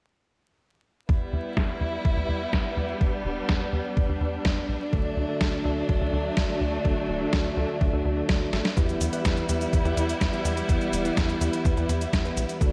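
Italo disco in E minor at 125 BPM, bittersweet and melodramatic, this excerpt opens at 1.1 seconds with rich, bowed chamber strings holding vibrato chords up front, a tight, punchy sequencer bass with tube saturation, and a thumpy electronic kick, joined at 1.6 seconds by a detuned 8-bit drum machine whose filtered snare, hi-hat and cabasa sound tape-warm and roomy. A filter sweep runs on the analog synth bass until 8.8 seconds, and a clean tine electric piano adds delayed stabs from 4.9 seconds as the harmony moves from Em to D. A drum fill at 8.5 seconds leads into a new section returning to Em, all set in a dreamy, reverb-soaked hall with vinyl crackle.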